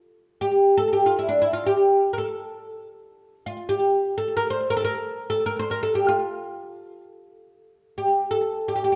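Close, detailed microphones and light reverb put a solo oud up front in this short passage cut from a longer Persian modal ensemble piece, played in free time and tuned to A4 = 442 Hz. Plucked with a plectrum on its fretless neck and double strings, the acoustic oud has a woody, deep voice touched with slapback echo, ranging between D4 and C5 from 0.4 s until it stops at 9.0 s. The mood is festive and warm.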